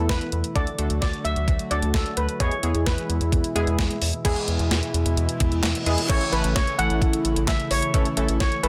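Upbeat and nostalgic, this synth-pop excerpt rides a straight 4/4 groove from an up-front, overdriven 12-bit drum machine with a thumpy kick, medium-tuned snare, handclaps, hi-hat and crash cymbal. Beneath it, a rubbery, hollow square bass and a punchy, detuned sawtooth polysynth comp with chorus sit over a shimmering, retro pulse-width pad. A metallic steel pan carries the melody through digital delay, dropping out at 3.3 seconds and returning at 6.1 seconds after a brief electronic reverse cymbal at 5.5 seconds, in a plate-reverb space with a dense, heavily limited master.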